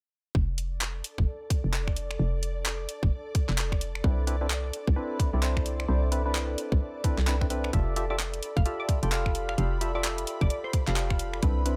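Bouncy and sunny, this two-step UK garage excerpt rides a tight, overdriven kick and an overdriven garage kit of finger snaps, handclaps and hi-hat under a hollow, knocking FM bass up front, while ethereal and breathy pads pump softly in the background, a nasal organ stab with chorus and delay arrives at 4.0 seconds, and a crystalline wavetable pluck adds a brief melody from 8.1 seconds as the chords move from F to Cmaj9 to Fmaj9.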